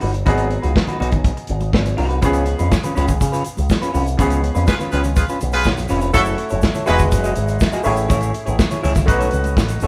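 A sultry, danceable disco groove at 122 BPM opens with the full rhythm band: a dark, tight modern studio drum kit playing hi-hat, kick and snare, and an up-front picked electric bass whose envelope filter gives it a punchy bite. Underneath, a clear baby grand piano with short sustain and a clean, fingered semi-hollow electric guitar with a vibrato effect fill out the accompaniment over G#m7 moving to C#7. Bright, damped congas slip in very quietly almost at once, and a grainy egg shaker joins far in the background at 2.2 seconds. A band accent lands at 4.2 seconds, and a clear, up-front horn section punches in with tube-saturated stabs at 4.7 seconds. The harmony then shifts through F#m7, Emaj9, Amaj7 and B9, all in a light, live-room reverb that keeps the excerpt feeling like one band playing together.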